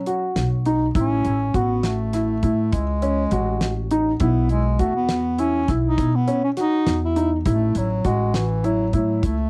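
A bass clarinet opens this short cut from a longer progressive instrumental, carrying the melody up front with a soft attack and classical poise. A baby grand piano joins almost at once with intimate arpeggios, its action noise audible and a tape echo trailing its notes. Dry, damped 70s drums come in alongside it on hi-hat, fat snare and tight kick, and a woody, thumpy upright bass enters at 0.4 seconds, plucked on steel strings with a dark tone near the front of the mix. The band moves in an uneven 11/8 with a straight feel, the harmony shifting between B5, F#m9/A, Bsus4 and F#m7/A, which gives the passage an intricate yet bright character. Captured as a home recording on cassette with little reverb, the sound is intimate and unadorned, carrying the soft grain of tape.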